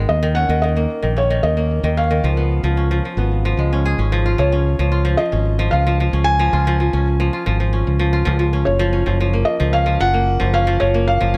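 Folktronica at 112 BPM in a straight 4/4, hopeful and playful, with a bright, ringing kora spinning arpeggios through a filter sweep over the first 4.4 seconds while a direct fingered electric bass sits up front beneath it. A soft, muted upright piano with felt dampening carries a mellow, intimate melody touched with delay, moving over D#5, C#7, C# and F#maj7 chords as the music shifts into a new section at 4.4 seconds. Light reverb gives the whole a small-room feel in this excerpt cut from a longer piece.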